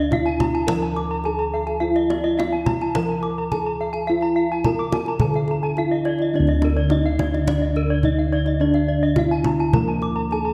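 Shimmering and ceremonial, this Balinese gamelan passage in D pelog moves at a straight 106 BPM in 4/4, with a mellow, padded-mallet bronze metallophone carrying the melody through a slapback echo, a soft, vintage, band-limited metallophone and a bright, horn-struck one weaving high arpeggios, round, beating bossed gongs up front on the bass, tight kendang drumming, and an airy low metallophone accompaniment entering at 6.3 s, all set in a moderate scoring-stage reverb with a dark, warm production and cut from a longer piece.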